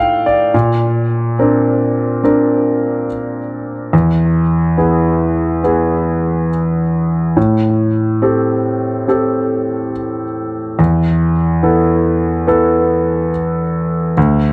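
A dry, close recording with a 1970s studio character, light reverb and small-room ambience frames a solo concert grand piano that sounds clear and intimate, with deep bass, audible action noise and a touch of tape echo. This slow pop excerpt at 71 BPM in 4/4 feels heartbroken and melancholic, opening on F7/A with a brief piano fill in the first half second, then moving through Bbadd9, E, Am7 and Esus4. The piano sits up front and polished across its range from D2 to G5 for the full 14.5 seconds.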